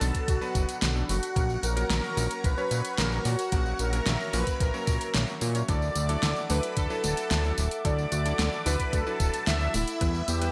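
A straight 4/4 synthwave groove at 111 BPM drives this moody excerpt, with a thumpy electronic kick and a fat analog bass that pumps together with a warm, sidechained pad, while a pop drum kit adds a fat snare, metallic hats and tambourine bathed in gated reverb. A smooth, full-bodied supersaw carries the melody with delay over a shimmering string-machine violin line and clangy electric grand piano stabs, moving through Bm7, F#/A#, Dadd9 and Em. A very quiet, punchy unison pluck arpeggio joins at 5.7 seconds, all set in a bright 1980s-style digital production with moderate plate reverb.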